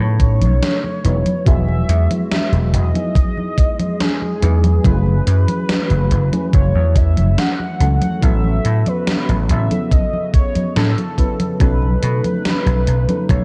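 A velvety, vibrato-tinged synth lead carries the melody over a soft, round FM electric piano, a faint, warbling tape-like pad and a punchy, up-front slap bass from the opening moment of this dreamy, faded vaporwave excerpt in E major at 71 BPM, before a thumpy, overdriven kick and a gated 80s drum machine with congas, hi-hat and snare join at 0.2 seconds, all moving through Emaj9, F#m7, A69 and B9 under a cassette-tape haze and light digital ambience.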